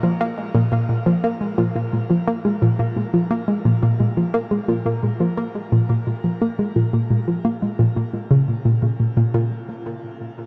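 Ambient music with an expansive, mysterious mood, heard as a short cut from a longer piece. An analog pluck plays a riff in a low register from 0.0 to 9.7 s, its detuned, wave-folded tone bright and up front, with a fast attack that decays into chorus and tape echo while a filter sweep moves through it until 9.3 s. A moderate shimmer reverb with a long tail surrounds the pluck, and a brief new section begins at 9.3 s just before it stops.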